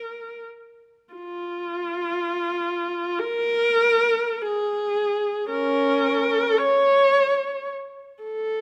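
Freely rubato in a slow 3/4 of 36-56 BPM, this brief, meditative and mournful classical fragment in Db major features a lone bowed viola, up front and closely, intimately captured with light reverb, singing between Db4 and Db5 with a warm, vibrato-laden tone and expressive portamento slides across its 8.6 seconds.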